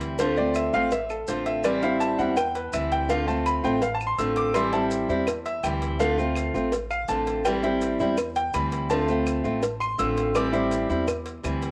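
A straight 4/4 groove at 165 BPM drives this nostalgic fragment of Cuban son and guajira in A minor, with a round, low-tuned cowbell and woody claves entering at 0.6 s sitting close and dry in the background alongside grainy, vintage maracas, while a thumpy pizzicato upright bass anchors the low end. Up front, a dark, picked steel-string acoustic guitar with audible finger squeak carries the accompaniment, and from 0.2 s a brilliant, worn concert grand piano takes the featured role with high, present arpeggios over a Dm7 to Am7 alternation. Guitar and piano carry a cassette tape character, and the whole home recording sits in a moderate spring reverb.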